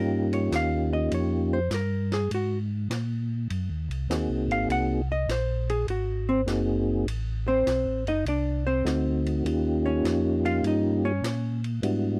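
Soul jazz organ trio with a greasy, soulful swing, where a soft, flute-like tonewheel organ with percussive second-harmonic attack carries the melody over chords moving from Eb9 to Ab9, Adim7 and back to Eb9. A dark, clean, fingered hollow-body electric guitar sits up front in a soloing role, while a round, mellow organ bass line shares the slow rotary speaker and chorus vibrato of the lead organ. A compact acoustic drum kit enters at 0.3 seconds with dark-toned hi-hat and ride cymbal and a high-tuned snare, all captured in a dry, close 1970s-style studio sound in this short cut from a longer piece.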